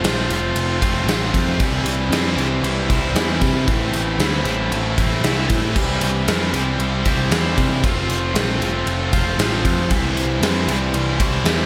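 Classic rock at 116 BPM in C major, this sunny, swaggering excerpt from a longer piece rides a straight 4/4 groove through an F, C, Am, C, F, C progression across its 11.7 seconds. A tight, bright distorted guitar riff, double-tracked and up front with slapback echo, sits over a growling picked electric bass with overdrive and a gated 80s drum kit featuring bright cymbals, a medium-tuned snare and a tight kick. A recital-hall reverb and small-room ambience give the whole a big arena sound.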